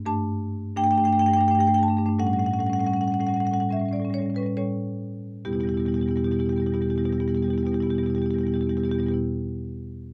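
The rhythm moves freely in a rubato 4/4, with the pulse easing and slowing through the first 5.4 seconds before a new passage begins. This is a contemporary classical piece for solo marimba, cut from a longer work, and its mood is flowing and hypnotic. The marimba, played with medium mallets, carries everything alone from 0.0 to 9.2 seconds, ranging from a deep E2 up to A5. Its rosewood bars give a woody, warm tone that sits up front in the sound. The harmony moves from Gsus2 to A7 and then settles on E minor at 5.4 seconds. Close, detailed microphones capture the instrument, and light reverb adds a touch of space around it.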